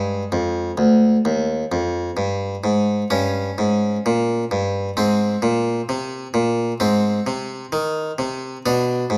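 A classical, baroque-style suite movement for solo harpsichord unfolds at a slow 65 BPM in 4/4, played with rubato that gives the line a flowing yet solemn character. The single harpsichord, an Italian-style instrument with one set of strings, has a bright, plucked tone and sits up front, captured by close, detailed microphones. Its part moves in the low-to-middle register between D2 and D4. The harmony passes from Ab5 to Gdim at 3.1 seconds, back to Ab at 5.0 seconds, and touches a rootless G at 8.7 seconds. A moderate recital hall reverb surrounds the instrument with a sense of space, and this brief 9.2-second passage is cut from a longer piece.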